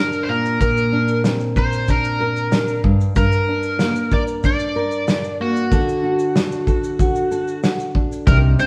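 A bright, overdriven slide guitar played with fingerpicks carries the melody up front in this wistful, tender acoustic pop excerpt at 94 BPM. Beneath it, a fingerpicked classical nylon-string guitar with fresh strings and audible finger squeak moves through Bbadd9, Gm and D, alongside a loose indie drum kit with a punchy kick, medium-tuned snare and shaker, sitting mid-forward with a rolled-off top, all played live together in one stone room with wet reverb. At 8.3 seconds, a woody, thumpy pizzicato upright bass on gut strings and a clean, compressed, direct-recorded electric guitar playing arpeggios in the background enter briefly.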